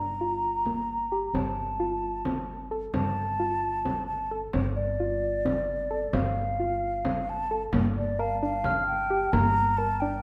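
A mellow, hollow concert flute sits up front with a touch of vibrato, carrying the melody through this hypnotic, restless chamber piece in an uneven 7/8. Beneath it, a soft, round plucked synth with chorus spins dark arpeggios, while a woody pizzicato upright bass and a deep, distant frame drum anchor the pulse as the harmony shifts between Gm7 and F/G. Rubber-mallet glockenspiel adds a bell-like shimmer from 8.2 to 9.1 seconds, and a lush recital-hall reverb surrounds this short fragment of a longer work.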